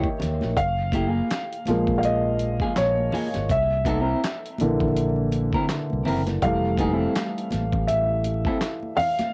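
A swung sixteenth-note groove in 4/4 sets an introspective, soulful neo-soul and R&B mood. A gritty, compressed sampler-style drum kit with a thumpy kick, snare, hi-hat and handclaps sits under a growly, punchy fingered electric bass, while high-tuned congas ring from the background. An intimate baby grand piano, up front with audible action noise and long sustain, takes a solo from 0.6 seconds, and a slightly broken-up electric guitar adds a second line through tape echo, all captured in a home recording on cassette with vinyl crackle.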